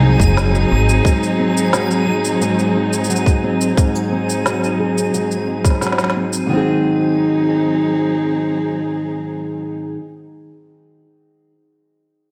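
A straight 4/4 pulse at 88 BPM from a tight, tape-toned electronic kick and a woody electronic cabasa and snare drives this playful, hopeful folktronica excerpt in Ab mixolydian, where a boxy parlour steel-string acoustic guitar fingerpicks arpeggios through a diffuse ambient delay and a dark bowed string quartet, rich with vibrato and portamento, holds sustained chords under gritty 12-bit sampler grain, both swept by filters until 6.5 seconds, while a growly pizzicato upright bass sounds only in the first second and a bright, detuned, reversed granular swell glimmers in the background of a dreamy mix soaked in lush hall reverb.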